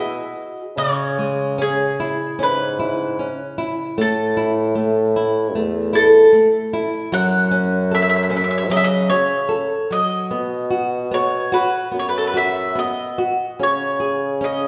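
A round, up-front mandolin picks a nostalgic, tender melody on doubled strings over fingerpicked nylon-string guitar, whose finger squeaks show through, and a mellow bassoon bass with light vibrato in this rubato fado-style ballad in C# minor at about 75 BPM, cut from a longer piece and bathed in the lingering reverb of a church or concert hall.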